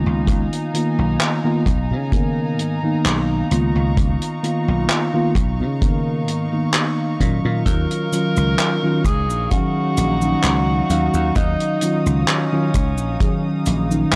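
Vaporwave at a slow 65 BPM in straight 4/4, melancholic and woozy, cut from a longer piece, where a mellow tine electric piano with lush chorus and tape echo carries the chords up front over Db13 moving to Ebm9, a punchy, foam-muted thumbed slap bass and a tight kick sit forward, a deep reggae kit with cabasa, handclaps and hi-hat fills in, a distant bowed chamber string section adds earthy 12-bit sampler grit, and a clear, roomy tenor saxophone with light vibrato and tape echo enters at 7.7 seconds, all captured dry on gritty hardware and cassette tape.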